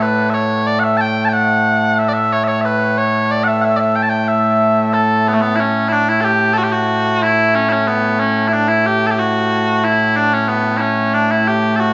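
Scottish traditional pipe music, ceremonial and stirring, cut from a longer piece at a straight 92 BPM in 2/4 and A mixolydian. Mellow small bagpipes play solo and up front for the full 11.9 seconds with a sweet, continuous, vibrato-tinged tone, stating the same strain twice with the repeat beginning at 6.2 seconds, all set in a huge ambient reverb over a small room ambience.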